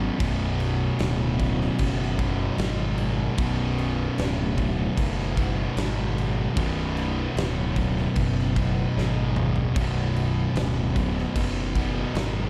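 This is a brooding, heavy stoner and doom metal passage in B dorian, cut from a longer piece and moving at a slow 75 BPM in straight 4/4 over a Bm chord. A growly, punchy fuzz bass, played with the fingers and overdriven, sits up front, digging down as low as B0 with a direct, amped edge. Behind it, three guitars play the riff in the B1 to B2 range: a double-tracked, bright overdriven electric guitar, a warm distorted fuzz guitar, and a dark fuzz guitar so quiet it mostly thickens the sound. A big acoustic rock kit enters at 0.2 seconds with a punchy kick, a medium-tuned snare, toms and bright crash cymbals, set in a bright stone room. A drum fill arrives from 9.0 to 9.8 seconds before the passage ends at 12.5 seconds. The production is dark and dry, with little reverb.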